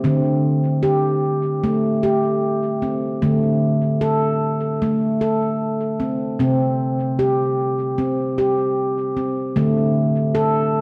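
World meditative music at 76 BPM with a light swing, this short cut from a longer piece features a solo handpan, placed up front, playing from 0.0 to 10.8 seconds across a range from C3 to A4. Its stainless steel tone rings mellow and soft under gentle fingertips, carried by tape echo and set in a wet echo chamber reverb with a touch of small room ambience. The dark, warm production suits the calm, meditative mood as the harmony moves between D and C chords, with a new section beginning at 3.2 seconds.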